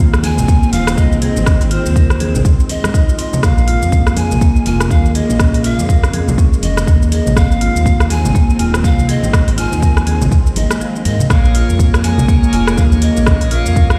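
Dark, lush bowed strings, a smooth percussive marimba with tape echo and a gliding sawtooth synth bass open this earthy, driving afro house excerpt in Bb minor at 122 BPM, all three pumping to the sidechain under a swung 16th-note feel. A deep, up-front electronic kick, a tape-warm deep house kit with metallic hats, rim click and shaker, and soft, very quiet congas join almost at once, while a breathy, reedy pan flute with chiff and vibrato carries the melody through echo. After a short break at 10.8 seconds, a shouting, lightly overdriven tonewheel organ enters at 11.3 seconds with stabs through a slow rotary speaker as the chords move between Ab and Bbm7, all set in the stony reverb of a bare room.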